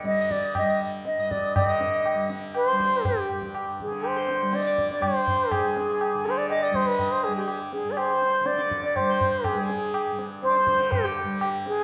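A steady, straight four-beat pulse carries this meditative, radiant Hindustani classical passage, cut from a longer piece. The low-tuned tabla rings with an acoustic, small-room character, while the tanpura sustains a softly plucked, buzzing drone that shimmers underneath. Up front, a reedy bamboo bansuri leads the melody with a pure, straight tone, soft attack and rolled-off highs. A hand-pumped harmonium adds a second line in the same register, its sound breathing, nasal, dark and smooth. After a brief opening, the music moves into a longer passage at 1.6 s, and a moderate concert-hall reverb gives the performance a spacious glow.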